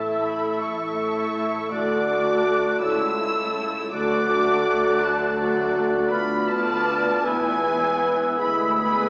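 A muted violin section carries the melody from the very start of this elegiac, yearning classical excerpt, with a veiled, con sordino tone and vibrato. Alongside it from 0.0 s, a dark clarinet and a muted, lush symphonic violin section share a second line below, while a mellow, hollow silver flute adds a pure, close-miked second line above. A dark bassoon and a soft-attack viola section supply accompaniment in the background. A French horn section holds sustained chords from a distant, roomy position, and bowed cello and double bass sections form the bass, the double bass sitting low and quiet. The pace is a slow, rubato 54 BPM in 6/8, moving from A through D and A/C# to Bdim/D, then E and E7/D, leaving the phrase unresolved when it is cut at 9.1 s. The ensemble sits in a reverberant concert hall heard from further back, with a small-speaker quality to the sound.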